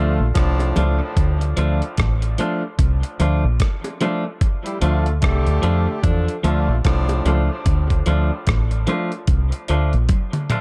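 Dub reggae in D minor at 74 BPM, this short excerpt moves with a swung sixteenth feel and a spacious, heavy mood, resting on a single D minor chord throughout. A deep, round fingered electric bass sits up front with a dark, foam-muted tone, joined from 0.4 seconds by a dusty, sampler-style drum kit whose gritty, overdriven sound brings a thumpy kick along with hi-hat, rim clicks and toms. A clean, twangy electric guitar plays bright, picked accompaniment through a high-pass filter and dub echo, while a smooth horn section with light vibrato carries a second line, also treated with dub echo, until it drops out at 7.5 seconds. Very quiet, high-tuned bongos with hard hands add tight percussion in the background. A filter sweep runs through the final few seconds, and a drum fill closes the passage at 10.1 seconds, all within a dark, dry production.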